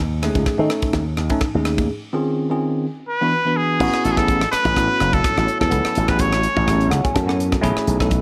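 A swung sixteenth-note groove in 4/4 at 126 BPM drives this soaring, slick slice of electric jazz fusion, cut from a longer piece. A tight funk drum kit with a tight kick, hi-hat, rim clicks, ride and crash sits in a small-room sound. Beneath it, a growly slap bass pushed through an envelope filter sits up front. A bell-like, clean tine electric piano colours the chords through a phaser, moving from Amaj7#11/C# through Eb13sus4 and E7 to A6. At 3.1 seconds a trumpet with a straight mute takes the melody, nasal and brilliant with vibrato, a smooth top and jazz-style phrasing. From 3.8 seconds a very quiet, silky vintage string machine adds slow-attack sustained chords with ensemble chorus, and the electric piano slips in a short fill at 6.7 seconds before the closing B13sus4.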